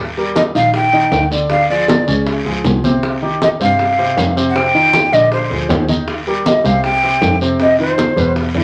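Soft-handed, low-tuned congas, tight high-tuned bongos in the background and a raspy guiro drive this sunny, lively Afro-Cuban jazz excerpt at 158 BPM in a straight 4/4 in Eb major, where a bowed, nasal double bass and an up-front concert grand piano with deep bass and short sustain support a breathy, mellow metal flute that enters at 0.4 seconds with a crisp chiff and unsteady vibrato, set in a wet club reverb.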